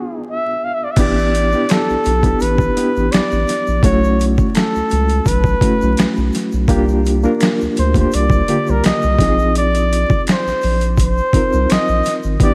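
Introspective and soulful, this neo-soul R&B excerpt moves at an unhurried 84 BPM in 4/4 with a light swing on the sixteenths. A warm flugelhorn carries the melody up front from the first moment, its soft attack, light vibrato and scooped notes giving it a jazz-styled solo voice, while a reedy, slightly out-of-tune electric piano with a fast tremolo supplies the chords through its worn built-in speakers. At 1.0 seconds the groove arrives: a gritty, pitched-down boom bap drum kit with a thumpy kick, medium-tuned snare, hi-hat and crash, compressed and overdriven, alongside a round, deep analog bass with a dark, sustained tone. Very quiet, band-limited egg shaker, finger snaps and handclaps sit far in the background with a vintage feel. The harmony drifts through suspended ninth chords, moving from E7b9 to A9sus4, then B9sus4, C9sus4 and Bb9sus4. A lush hall reverb and a bed of vinyl crackle soak the mix in a dreamy haze.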